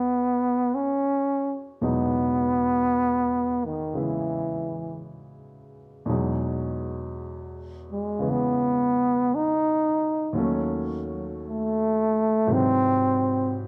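A slow jazz ballad at 56 BPM in E major, romantic and intimate, swung in 4/4 and cut from a longer piece. A clear, close-miked trombone carries the melody with a soft attack and vibrato, sitting up front throughout and taking a solo from 6.1 seconds to the end. A grand piano accompanies it, its tone present and polished with short sustain, placed up front but lower in level than the horn. The harmony rests on Emaj7 before moving to D#m7b5 at 10.3 seconds and a G#7alt near the close. A moderate large-studio reverb and a dark, warm production give the pair a soft, enveloping space.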